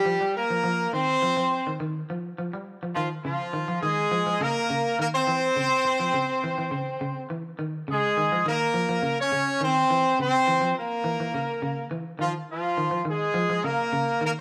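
A moderate stone room reverb surrounds a band playing live together in one space, lending this short afrobeat excerpt an immediate, roomy feel. The groove sits at 104 BPM in a straight 4/4, and the mood is hypnotic and intense. An up-front horn section carries the melody, its tight ensemble playing bright with vibrato, a smooth top and octave doubling in a pop style. Beneath it, an electric guitar at the edge of break-up plays picked arpeggios in a low register, its twangy, slightly gritty tone bathed in spring reverb and sitting well behind the horns. The harmony opens on Ebadd9, then from 3.0 seconds circles between Bbm7 and C chords, with a tense C7b9 arriving at 9.9 seconds before settling back on Bbm7.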